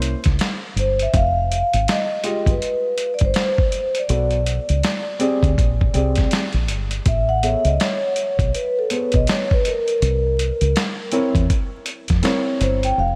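Light reverb and a layer of vinyl crackle frame this cool, mellow jazz-hop cut from a longer hip hop piece, swung on the sixteenths in 4/4 over a chord loop of rich ninths, thirteenths and an altered dominant. A gritty, compressed boom bap kit with a thumpy kick and medium-tuned snare sits up front beside a round, punchy, foam-muted fingered electric bass. A dark, vintage grand piano with short sustain comps underneath with slapback echo, while a soft-mallet vibraphone, close-miked and ringing with slow motor vibrato, carries the melody from 0.8 seconds, also touched with slapback echo.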